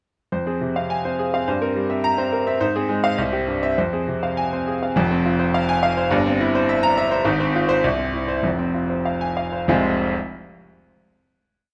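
This is a classical virtuoso piano study in F minor, passionate and stormy in mood, moving at roughly 95-107 BPM in 2/4 with a flexible, rubato feel. A solo grand piano carries the whole piece, its tone clear and smooth with a vintage character and long sustain, placed up front by close, detailed microphones. Rippling figuration is joined by a second figure in the upper hand, and sweeping arpeggios span the keyboard from F1 to Bb5. The opening statement is repeated from 5.0 seconds over harmony that circles between F minor and its C dominant, and the tempo slows from 6.7 seconds before a final chord at 9.7 seconds. A moderate recital hall reverb lets the piano's last sounds ring into the room.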